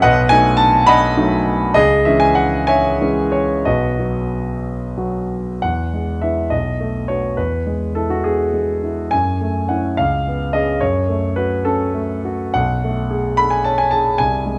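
A hopeful romantic character piece for solo piano in 6/8 at about 59-76 BPM in dotted quarters, its rubato phrasing carried by a natural, up-front grand piano spanning B1 to B5, close and detailed within a moderate recital-hall reverb, moving from an opening passage built on B7, C#m and B into a new section at 5.6 s that circles E, F#m7 and C#7 before this 14.6-second fragment of a longer piece pauses on an open Bsus2.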